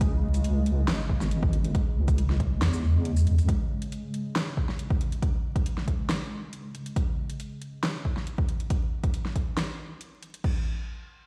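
Heard through a big sound system in a bare room with large studio reverb and vinyl crackle, this meditative, brooding deep dubstep excerpt in C# minor runs at 138 BPM with a half-time feel: a deep, dark, detuned wobble bass with chorus sits up front until 3.5 s, a cloudy, blurred granular pad with phaser and its own reverb holds sustained chords under a filter sweep until 7.0 s, and overdriven electronic drums carry on to the close with a punchy kick and crash cymbal, a fat snare, metallic hi-hats and shaker.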